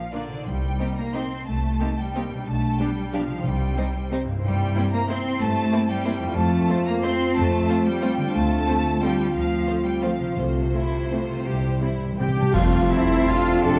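This classical orchestral ballroom waltz excerpt has a sweeping, elegant mood, moving in 3/4 at a rubato tempo between 153 and 199 BPM and settling into F major from 4.4 seconds. A lush violin section carries the melody with vibrato and a smooth top, while a clearer second violin section, a rich viola section and ringing, fingerpicked concert harp arpeggios fill in the background. A bright, intense cello section and a close, focused double bass section anchor the bass, and a distant, roomy French horn section holds mellow sustained chords. Very quiet timpani with soft mallets mark the opening moments, and from 10.4 seconds dark cymbals, a cymbal swell and concert bass drum join in, with a timpani fill following at 11.5 seconds. A soft-edged large flute ensemble slips in at 12.2 seconds, and at 12.5 seconds an accent brings in a brief new passage on F, where a vintage-toned clarinet, a cor anglais, a present trombone section and trumpet stabs thicken the texture. 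The production is dark, set in a moderate concert hall reverb.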